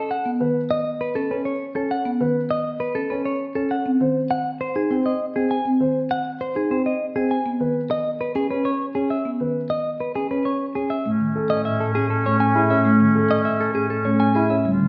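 Hypnotic and meditative, this fragment of a longer piece is classical minimalist pattern music in 3/4 with a straight feel. A clean, compressed electric guitar carries the fingered melody up front. Beneath it, a marimba played with soft mallets gives a woody, round and airy accompaniment, while a warm concert grand piano spins arpeggios with a deep bass. The harmony moves from B7 through G# and C#7(no3), then settles on Amaj7 at 11.1 seconds. There a new section opens as an oboe with light vibrato and a smooth top adds a second line, and a lush, bowed double bass section supplies a rich, even bass. The players sit in a recital hall whose reverb gives the sound a soft glow.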